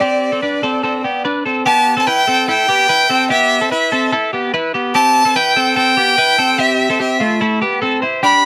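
A straight 4/4 pulse drives this short, bittersweet indie pop passage, lifted from a longer piece and tuned to A4 = 436 Hz. A twelve-string electric guitar plays clean, picked arpeggios throughout, its bright, twangy tone compressed and placed up front. Over it, a single bowed violin carries the melody between D5 and B5, smooth and even, with a rich vibrato that gives the line a wistful ache. The harmony rests on Gsus4 before shifting to Em at 1.7 s and then Am at 4.9 s, deepening the reflective mood. Light reverb surrounds the pair, keeping both parts close and intimate.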